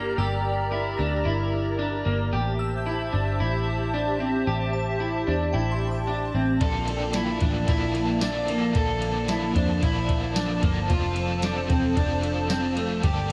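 This ethereal, hazy dream pop excerpt sits in a moderate recital hall reverb, giving the whole mix a soft, spacious bloom at 112 BPM in a straight 4/4. From the start, a hollow, flute-like pad holds sustained chords with a warbling, detuned ensemble chorus, while a dark, slightly broken-up electric guitar picks arpeggios up front through analog chorus and delay. Underneath, a vintage foam-muted electric bass plays round, amped low notes, and a shimmering FM bell adds a bright, decaying texture in the background until 11.1 s. At 6.6 s, as the harmony moves from Gm and Am7 to Bbmaj7, a soft vintage rhythm box enters with a deep kick, crisp snare, ride cymbal and tambourine, joined by a biting overdriven guitar whose accompaniment carries tremolo and lush chorus. The passage settles on F before it is cut off.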